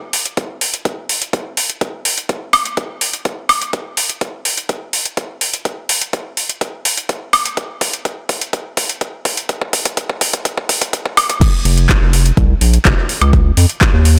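A round, dark analog bass arrives just after the drop, at 11.7 seconds, its folded, fast-attack tone pumping against the beat in this emotional, expansive progressive house excerpt at 125 BPM. From the start, an overdriven deep house kit with metallic hats, handclaps, woodblock and crash, recorded in a large room and pumping on the hats, percussion and cymbals, carries a long build-up and a drum fill from 3.7 seconds. A deep, overdriven electronic kick sits up front throughout, all under light reverb.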